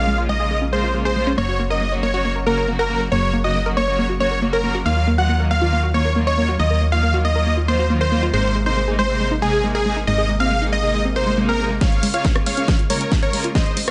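A huge, thick supersaw lead carries the melody of this uplifting trance piece in Bb minor at 138 BPM, its detuned sawtooth unison compressed and up front with sidechain pumping and tape echo. A lush unison pluck adds a second line in the same range, while a second, very quiet wave-folded pluck runs arpeggios with pumping and echo of its own. Beneath them, a clear, distant studio string section sustains bowed chords with vibrato, and a punchy, round FM bass sits dark and up front through Bbm7, Gb, Ebmadd9 and Abadd9. A very quiet electronic swell sounds at 11.1 seconds, and at 11.8 seconds the bass drops away as a layered big-room kit enters with a huge snare, hi-hat and rim click alongside a tape-warm analog kick for a driving drum fill and build-up. The mix is dry and soaring, with a rolled-off top end, and the clip is cut from a longer track.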